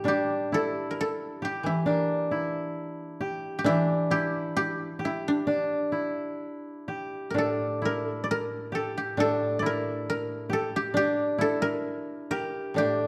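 Calm and austere, this excerpt of Japanese traditional chamber music unfolds at a rubato 66 BPM in 2/4, in A in the sen scale, with three fingerpicked kotos sounding throughout the 13.1 seconds: a mellow, up-front melody from D4 to D5, an equally forward second line from D4 to G4, and a softer accompaniment reaching down to A2, each dry and woody yet set in a moderate scoring-stage reverb within a dark production.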